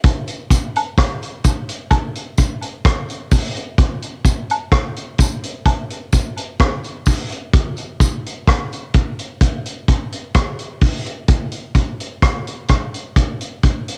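Hypnotic and meditative, this 64 BPM reggae fragment in a straight 4/4 sets a vintage acoustic drum kit up front for its full 14.0 seconds, its hi-hat, rim click and punchy kick sounding mid-forward with a rolled-off top and a cassette-tape tint, while a close, dry tambourine and woodblock part with tape echo and a shaker-and-handclap character sits lower from 0.5 to 8.2 seconds, all under light reverb in a homemade cassette recording cut from a longer piece.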